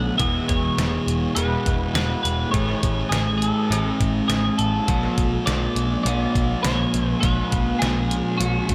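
A straight 4/4 pulse at 102 BPM comes from a detuned 8-bit drum machine that enters at 0.2 s, its thumpy kick, medium-tuned snare and hi-hat sitting up front with a tape-colored, small-room character. This short cut from a longer piece is dreamy, wistful rock in the shoegaze and dream pop vein, set in E mixolydian with a tuning slightly below standard pitch, and it moves from E to Amaj7 at 2.5 s and Bm7 at 4.9 s. Underneath, a vintage foam-muted electric bass plays a dark, round line in its lowest register, while a thick fuzz guitar grinds out a distorted riff touched with subtle chorus. One clean, compressed twelve-string electric guitar carries a riff through reverse reverb, and a second twelve-string takes the melody higher up, shimmering through analog chorus and tape echo. A moderate plate reverb soaks the whole mix in a hazy, dreamlike wash.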